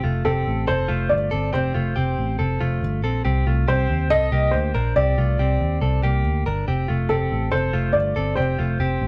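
This brief excerpt of jangly indie pop opens with a clean, direct-recorded electric guitar picking arpeggios alongside a dark, foam-muted picked electric bass that sits round and punchy up front. A fraction of a second later, at 0.2 s, an upright piano enters with the melody, its woody, slightly detuned tone carrying audible action noise that gives it an intimate, natural feel. The mood is bright and nostalgic, moving at a straight 140 BPM in 4/4 within F mixolydian. The harmony shifts from Fadd9 to Csus2 and back to Fadd9 over roughly nine seconds. The three parts sound like a band playing live together in one small room, with a moderate reverb lending a touch of space.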